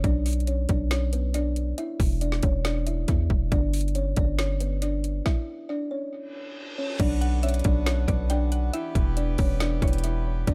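A dry, echo-heavy mix sets a hollow, woody kalimba melody, softened by a low-pass filter and tape echo, over a hard-clipped kick, woody snare, metallic hats and a heavy, aggressive distorted 808-style bass in this eerie, melancholic trap excerpt at 138 BPM in a half-time feel in B minor. After a stop at 5.3 s, a faint electronic reverse cymbal enters at 6.3 s. At 7.0 s a reedy, breathing pedal harmonium brings sustained chords, and from 7.2 s a round FM mallet-like synth pluck with chorus and tape echo adds a second line in the background.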